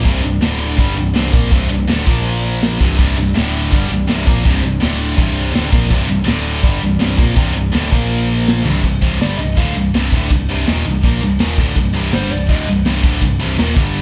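A straight, relentless 4/4 drive pushes this aggressive heavy metal passage, cut from a longer piece, as a modern studio drum kit with a punchy kick, a medium-tuned snare, toms, crash and china cymbals hammers out the beat in an airy, polished small-room sound. Two bright, picked distorted guitars carry the low riff together, one high-gain and the other tight with a slapback echo. Beneath them, a hollow-body short-scale electric bass adds a round, amped low end. For the first 8.8 seconds, a very quiet analog pad holds moody sustained chords built from detuned, wave-folded synth tones with a slow attack and chorus. A drum fill at 8.7 seconds opens a lead guitar solo section on a C minor chord, where a dark, overdriven lead guitar with slapback echo and delay plays short high phrases around 9.2 and 12.1 seconds. The whole performance comes across as a live club gig heard through the venue's PA, with a touch of club reverb.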